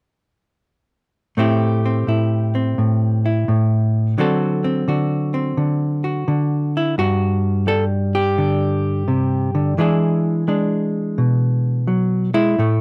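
A dark, clean, fingered hollow-body electric jazz guitar plays alone and up front in this sophisticated, swinging solo jazz excerpt, moving through Am7 and D7 before shifting to G5 at 7.0 seconds and then to E7, with a light reverb around its tone.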